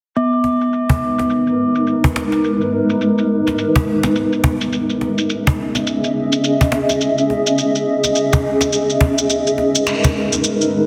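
A swung sixteenth-note feel in 4/4 drives this short organic downtempo passage, which is cut from a longer piece and carries a warm, meditative mood. The cajon sits up front with a woody, hard-handed attack and faint snares, while an electronic shaker and finger snaps add a produced, low-passed layer beneath it. A bronze singing bowl, struck with a wooden striker, rings from 0.2 seconds with a bright, metallic tone and slow beating. From 1.1 seconds, a granular cloud pad holds sustained chords moving from G#madd9 to C#m7 and back. The pad is up front, blurred and evolving, with slow attacks, long releases and a mellow, wave-folded character. Filter sweeps run across both the drums and the pad, and the mix blends a lush hall reverb and small-room ambience with a heavily compressed, radio-like sound.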